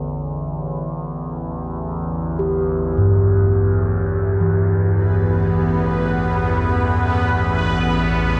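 A slow, straight 4/4 pulse at 63 BPM underpins this dark, unsettling ambient drone excerpt, which fades in on a detuned sawtooth-and-sine drone with moving overtones, low and up front with chorus and reverb over a sustained Asus2. At 2.4 s a quartz singing bowl enters with ringing, meditative arpeggios, its pure tone showing slow beating and drifting in a diffuse ambient delay, and at 4.9 s a bright, bubbling texture of random filter steps joins, resonant and detuned with chorus. The whole sits in a wet cathedral reverb with the grain of cassette tape.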